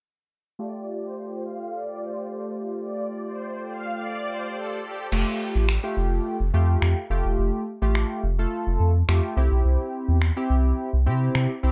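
Dance-pop at 106 BPM in F major, euphoric and summery, this excerpt from a longer piece has a dark, dry, low-pass-filtered production. A lush, detuned supersaw pad with a slow attack carries the melody through dub echo over a glossy, retro chorused polysynth whose filter sweep fills the opening on Fadd9. At 5.1 s a round, deep analog bass arrives up front with a detuned 8-bit drum machine, sampler-style and re-recorded in a large room, adding crash cymbal and finger snaps, while the harmony moves from Fadd9 to C at 9.4 s.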